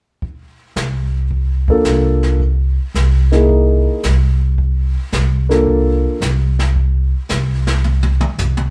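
Jazz piano trio in a playful, relaxed swing, cut from a longer piece, where brushed drums on snare, hi-hat, kick and toms start at 0.2 seconds with a boomy kick, a woody, thumpy gut-string upright bass sits up front, and a dark, mellow grand piano with audible action noise carries the melody from 1.7 to 6.2 seconds over a suspended chord, before a drum fill from 7.8 seconds closes the passage in a moderate studio room.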